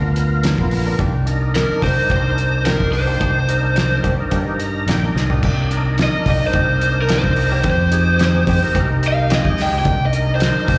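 A lightly swung, straight-eighth soul-blues groove in 4/4 rides on a muffled, cloth-damped drum kit with a fat snare and dark cymbals, a round, punchy fingered bass, and a thick tonewheel organ through a slow rotary speaker, while a twangy clean electric guitar adds compressed stabs in the background. The organ plays a fill at 4.3 seconds, and from 5.4 seconds an overdriven lead guitar through a small cranked amp takes an up-front solo over moody minor-ninth chords. Heard as a brooding, smoky cut from a longer live gig through the venue's PA, the sound carries recital-hall reverb and slapback echo on the drums, organ and both guitars.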